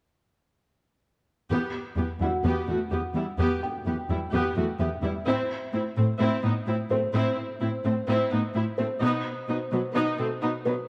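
A brooding, vast cinematic build-up, cut from a longer piece, opens at 1.5 seconds with a focused, lush viola section carrying the accompaniment in close vibrato while a dark, expressive cello section supplies the bass with portamento and a smooth top. From 2.2 seconds a soft, felt-muted upright piano adds a mellow, intimate, vintage texture touched with tape echo, sitting quieter than the strings. The harmony moves from Em to Am to B, and the recording has a dark production with a moderate recital hall reverb.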